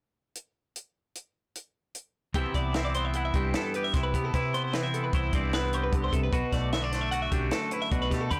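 A straight 5/4 pulse at 151 BPM opens this bright, intricate math rock and midwest emo fragment in C lydian, with a compact cocktail drum kit playing alone from 0.4 seconds: dry hi-hat, punchy kick and a high-tuned snare sitting up front. The round, dark hollow-body short-scale bass enters at 2.3 seconds, and a moment later an up-front, clean twangy electric guitar bathed in lush chorus joins a compressed, picked twelve-string electric guitar spinning sparkling arpeggios over Cmaj7, moving to Bm7 at 6.3 seconds. Light reverb surrounds a blown-out, overdriven recording that gives the whole passage a raw, saturated edge.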